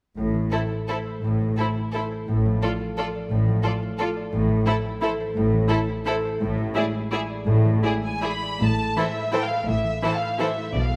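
Bittersweet and sweeping, this excerpt from a classical orchestral ballroom waltz in A minor sways in rubato 3/4 between 153 and 191 BPM, as a mellow, ringing concert harp plays arpeggios over bowed double basses and a smooth cello section from 0.2 seconds, while from 0.5 seconds a lush violin section carries the melody with vibrato, a second, focused violin line sits beneath it, and bright, intense, distant violas fill in the accompaniment, all set in a scoring stage reverb before a new section arrives at 8.6 seconds.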